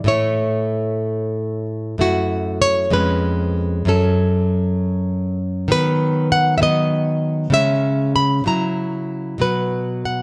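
A romantic solo classical guitar piece in 6/8, taken at 65 dotted-quarter beats per minute with a free, rubato feel and a sunny, tender mood, tuned slightly low to A4 = 439 Hz. The nylon-string guitar is fingerpicked and sits up front with a warm, acoustic tone and light reverb, ranging from E#2 up to B5. Over this 10.2-second fragment of a longer work, the harmony moves from A through F#m7, C#7/E#, F#m, B/D#, C#m and F#7/C# before arriving on B5 at 9.4 s.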